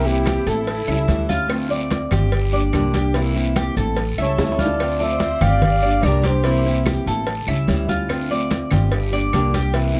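A danceable, nostalgic Cuban son and guajira groove in 4/4 at 146 BPM in D minor, carried by growly, thumpy pizzicato upright bass up front, fingerpicked nylon-string guitar with finger squeak, and bright, metallic tres arpeggios over a cycling C7, A7, Dm7, Gm7 progression, with hard-handed congas, tight cowbell and bongos, woody claves and raspy guiro behind, plus a drum fill at 4.4 seconds. A veiled, breathy trumpet in a bucket mute carries the melody with scooped notes in short phrases at 0.0 and 4.2 seconds, joined by a clear, focused bowed violin section playing a second line in the background. This excerpt from a longer piece sits in a moderate studio ambience with a soft, rounded top end.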